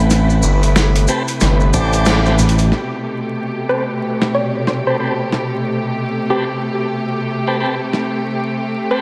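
A swung 4/4 groove at 92 BPM drives this gritty, swaggering glitch hop fragment in A minor, cut from a longer piece and resting on an Am9 chord. A smooth symphonic string section holds sustained chords with light vibrato throughout. A compressed, pitched-down boom bap drum kit with a high-tuned snare and hi-hat works alongside soft, grainy maracas. Up front, a bright, amped slap bass with an envelope filter and an aggressive, nasal driven synth bass carry the low end, and the band hits an accent at 2.1 seconds. At 2.7 seconds the slap bass and maracas drop out. A clean tonewheel organ with key click and fast rotary speaker adds stabs that pass through a filter sweep. From 3.7 seconds a woody, ring-modulated pluck with chorus and 12-bit sampler grit carries the melody in the background. The whole mix is dreamy and soaked in plate reverb, with a layer of vinyl crackle.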